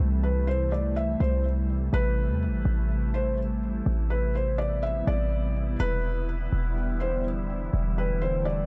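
Blissful and floating, this short slice of atmospheric cloud-rap drifts in a half-time feel over C, Am7 and Em7. A glassy, ethereal FM pad holds sustained chords through ensemble chorus and its own reverb, while a deep, boomy 808-style bass sits up front with a fast attack and decaying tail. At 0.2 seconds a soft, felt-muted upright piano enters with an intimate, boxy melody, its audible action noise and delay set within a small room ambience.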